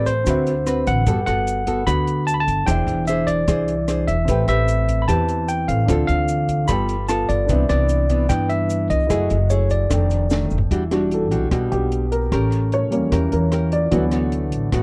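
A barky, bright tine electric piano carries the melody up front through a combo amp, singing in a high register over a wistful, melancholic bossa nova in E minor at 149 BPM, cut from a longer piece. Beneath it, a dark nylon-string guitar is fingerpicked in a classical manner with audible finger squeak, while a woody, thumpy upright bass played pizzicato on steel strings sits close and prominent. A compact cocktail drum kit with a high-tuned snare, punchy kick and rolled-off top works hi-hat, rim click and toms, and a grainy, saturated tube shaker ticks along in the background until about 10.7 seconds. The electric piano drops out at 10.5 seconds, midway through a drum fill, and from 10.7 seconds a worn baby grand piano with audible action noise and short sustain takes a solo over the lush extended chords that move through Em9, A7b9 and D6. The sound is a dry, close 1970s-style studio recording with little reverb and an intimate feel.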